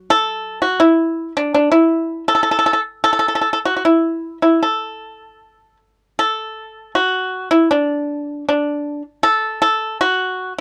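The recording is dry and close, with light reverb and the intimate feel of a 1970s studio session. It is a short cut from a longer piece of Chinese traditional music for solo pipa, flowing and elegant in mood. The pipa plays alone for the full 10.5 seconds, sitting up front with a mellow, percussive tone shaped by fingerpicks. Its line moves between F#3 and A4 in a free, rubato 4/4, with the tempo hovering around 73-85 BPM. The phrase opens with one idea, then turns to a contrasting passage at 6.2 seconds that carries the music to its close.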